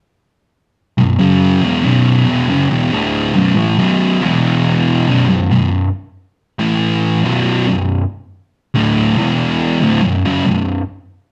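This brooding metal excerpt opens on a thick fuzz guitar that enters at 1.0 seconds as the solo voice, its dark, double-tracked tone sitting up front in a reverberant studio room. At a slow 70 BPM in B minor, the picked, heavily distorted lines move between B minor and E power chords in a straight 4/4. The part stops at 10.8 seconds, leaving an ominous, live-in-the-room weight hanging as the second section runs on briefly.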